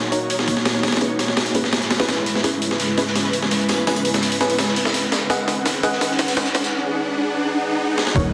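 A dense, heavily limited master, wrapped in vinyl crackle and a wet echo-chamber reverb, gives this short drum and bass and jungle cut a raw, nostalgic air at 168 BPM in straight 4/4. Up front, a compressed sampler-style breakbeat kit hits with a thumpy kick, a high-tuned snare and gritty hi-hats, each drum thinned by a high-pass filter and set in studio reverb. Beneath it sits a very quiet, saturated acoustic break with a rolled-off top. In the background, a muted, detuned sawtooth dub chord stab with chorus and dub echo moves through Ebm7, Dbm7 and Abm7 under a filter sweep that runs the length of the build-up, alongside an electronic riser. A drum fill begins at 2.4 seconds as the tension climbs, and at 8.2 seconds an impact lands with a deep, rumbling detuned saw bass on Eb1 and one final stab.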